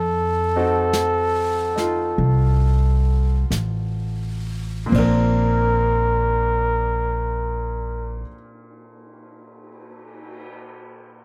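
A veiled, breathy bucket-muted trumpet with light vibrato sings the melody over a woody, up-front pizzicato upright bass from the start, joined by a brilliant upright piano at 0.6 seconds and an airy brush kit with dark cymbals at 0.9 seconds, in this intimate, tender jazz ballad fragment in Bb major that swings at 41-51 BPM, slows through its opening phrase over F7b9, and arrives on Bb at 4.9 seconds, recorded close and dry.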